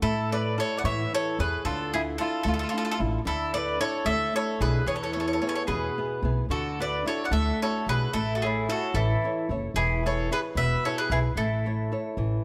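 A lilting 6/8 pulse at 74 beats per minute, counted in dotted quarters, drives this lively, romantic Italian folk serenade in A major, cut from a longer piece and tuned slightly below standard pitch. Up front, a bowl-back mandolin carries the melody with picked double strings, its tone lightly echoed by an analog delay. A second mandolin, round and picked on doubled strings, plays a supporting line beneath it. A fingerpicked flamenco guitar supplies the accompaniment, with audible finger squeak, while a pizzicato upright bass on gut strings adds a woody, dark, thumpy foundation close in the mix. The harmony moves from A through Dmadd9, Dsus2, E and Dadd9 before settling back on A, a nylon-string guitar fill arrives at 12.2 seconds, and the close, detailed recording sits in light reverb.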